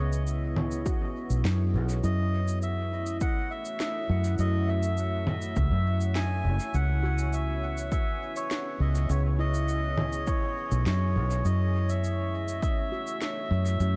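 A reedy, breathy melodica carries the melody over a dark, detuned sawtooth pad with chorus and a slow attack, while an up-front, tube-saturated fingered electric bass anchors this deep, spacious ambient dub passage cut from a longer piece, moving between C#m7 and F#m7. Electronic shaker, congas and a woody snare with dub echo surround it, and at 0.9 seconds a ringing handpan joins softly in the background with dub-echoed arpeggios, alongside a punchy, overdriven electronic kick that drops out at 12.7 seconds. Vinyl crackle, light reverb and digital ambience give the whole passage a spacious, meditative air.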